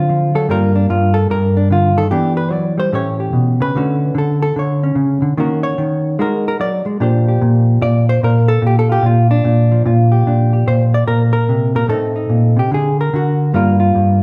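A dark, clean hollow-body electric jazz guitar plays alone and up front through this playful, relaxed swinging solo jazz excerpt, its fingered, compressed tone ranging from G2 to D5 over chords like Gm7, Dmaj7 and Bb69, set back in a large studio with a wet reverb that lingers 1.2 seconds, the soloing carrying to 10.3 seconds before a shift in section that runs on to 14.2 seconds.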